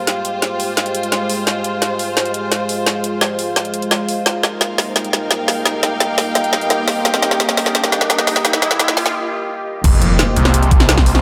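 A snarling, detuned sawtooth bass growls in at 9.8 seconds with an overdriven knocking kick to hit the drop of this futuristic, dark technical drum and bass excerpt in F minor at 172 BPM. Before it comes a build-up where a moody sub-octave pad sustains Fmadd9 and Eb chords and a lush, bowed string section adds texture, beneath a woody-snared, bright-hatted drum fill and a background riser that gives way to a brief break and an impact, all set in a moderate hall reverb.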